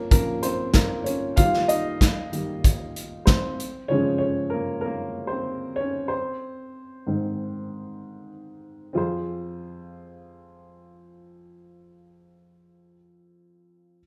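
Dramatic and earnest, this fragment of piano-driven pop centers on a dark, woody upright piano with a boxy, short-sustained tone, playing accompaniment that moves through Bbm, Eb, Db and Ab before settling on Fm at 9.0 seconds. A modern acoustic drum kit with a punchy kick, medium-tuned snare and hi-hat sits up front in a pumping studio room, then stops at 3.7 seconds. The two parts sound as though played together in one room, wrapped in a moderate large-studio reverb.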